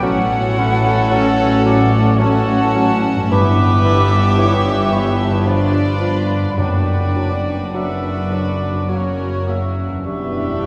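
Solemn and yearning, this slow romantic orchestral movement in 3/4 sways with rubato at 51-57 BPM: a floating, sul tasto violin section carries the melody while a hollow flute, an oboe, a clarinet and a second, distant violin section weave supporting lines. Viola section and a mellow bassoon fill the accompaniment, French horn and trombone sections hold sustained chords, a ringing harp plays arpeggios, a clear trumpet adds stabs in the background, the cello section, dark double bass section and tuba anchor the bass, and timpani barely surface between 6.6 and 8.3 seconds, set in a wet church reverb over chords moving from F#m/A to Em7.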